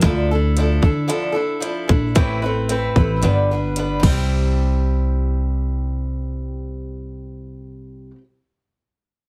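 A glitchy electronic drum kit, tape-warm with a tight kick, clicky hats and ride cymbal, plays from the start of this hopeful, open-road fragment of folk and heartland rock until it drops out at 4.2 s, leaving a woody pizzicato upright bass and a boxy, picked old ladder-braced acoustic guitar with aged strings to carry on to about 8.2 s, in a heavily compressed radio-style mix with light reverb.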